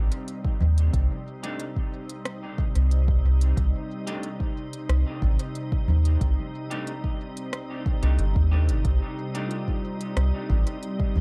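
An echo-heavy, fairly dry mix with a faint mains hum carries this meditative, deep ambient dub excerpt at 91 BPM in C dorian, resting on a single Cm69 chord. A round, up-front sub bass and a tape-warm electronic kick anchor a bright, chorused organ-like pad, while an overdriven electronic kit of congas, smooth hi-hat and rim click trails dub echo. Clean semi-hollow guitar stabs with dub echo fill the middle stretch, a very quiet, ringing handpan plays arpeggios at the start and returns at 9.0 seconds, and a bubbling, resonant stepped-filter texture enters at 9.4 seconds.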